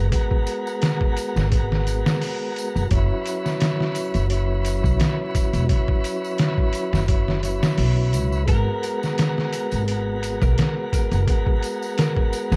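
A tonewheel organ with key click, fast rotary speaker, harmonic tremolo, tape echo and a 12-bit sampler grit opens this cinematic, melancholic trip hop excerpt in G# minor at 86 BPM. Alongside it is a woody, pizzicato upright bass with tube saturation, and a compressed, pitched-down, gritty sampler-style drum kit with a thumpy kick and medium-tuned snare joins at 0.1 seconds over a lightly swung 4/4, moving from G#m9 to F#7sus4 and back. A close, dry tambourine sits in the background, and at 8.5 seconds a slightly broken-up electric slide guitar, played with fingerpicks and touched with tape echo, adds a quiet melody over a dark, warm production laced with vinyl crackle.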